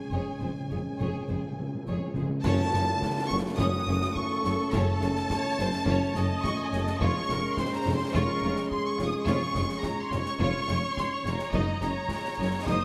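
This heroic adventure film cue opens on a timpani fill with medium mallets on calf heads, close and dry, under a warm, expressive violin melody with vibrato and a soft attack and a mellow French horn section holding tight, smooth-topped chords. From the start, a second violin line, a clear, focused viola accompaniment and a bass of rich cellos and double basses fill out the lush bowed string body, while a very quiet cymbal swell and tam-tam add bright shimmer. At 2.4 seconds a band accent lands as clash cymbals with a dark edge, concert bass drum and concert snare drum enter. At 2.5 seconds a pure, straight-toned flute joins the melody's register in the background, and a very quiet, close-miked tuba reinforces the bass. The music moves at a straight 106 BPM in 4/4, shifting from Db/F to Gbm, back to Db/F and on to Ebm/Gb, with a soaring, adventurous mood. A moderate concert hall reverb gives the ensemble depth, and the passage is cut from a longer piece.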